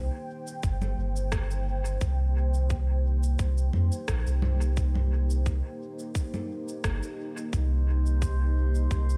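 Set in a light, digital ambience, this short ambient dub excerpt feels spacious and hazy, moving at 87 BPM in 4/4 with a gentle 16th-note swing and resting on a single Cm7 chord in C minor. A deep, dark pad of detuned sawtooth unison layered with sine, triangle and a sub octave holds sustained chords throughout, its slow attack and long release softened by chorus and built-in reverb. Underneath, a round, mellow sub bass with a fast attack sits up front, given body by tube saturation. From 0.5 seconds, an electronic shaker, congas and rim click, overdriven and re-recorded in a large room, trail dub echo behind them, while a tight, overdriven electronic kick joins at 0.6 seconds and stays up front. At 7.7 seconds, a calm, glassy texture of drifting overtones fades in on a high C, bathed in chorus and reverb.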